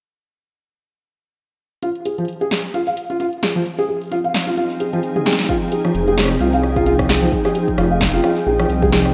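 IDM with an intricate, eerie feel, where a soft, felt-muted upright piano plays up-front arpeggios through a low-pass filter sweep and delay while punchy, tape-warm analog drum machine snare and metallic hats set a swung groove from 1.8 seconds, a glassy, ethereal FM pad with ensemble chorus drifts in at 4.0 seconds, and after a drum fill a deep electronic kick joins at 5.5 seconds, followed by a rumbling, detuned saw bass at 5.9 seconds, in a rough home-demo mix bathed in lush hall reverb.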